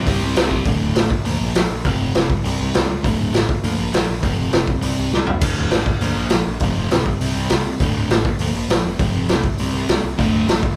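A sludgy, overdriven guitar riff and a growly, fuzz-soaked picked bass open this raw, aggressive punk rock fragment in D minor at a driving 202 BPM, joined by a boomy, gritty garage drum kit that sits up front with a snare and crash cymbal, a fill at 5.1 seconds, and a background second guitar that flickers in only at the very start and again at 10.2 seconds, all cycling through C5, D5, Bb and F5 with the light reverb of a band playing live in one room.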